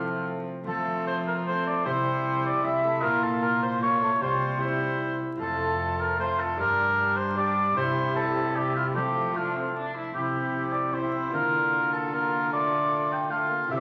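A wet recital-hall reverb and vinyl crackle surround this festive, stately renaissance-style consort dance in F major, taken from a longer piece and moving in a straight 3/4 at 152 BPM. An up-front oboe with light vibrato carries the melody while a nasal, gut-strung viola plays a second line, a clear trombone and a bright, ringing fingerpicked harp accompany, and a dark bowed cello holds the bass. The harmony moves from F through a Bb minor chord and a Csus4 settling on C, then after a new section begins at 10.2 seconds it turns toward Bb over D and reaches D minor.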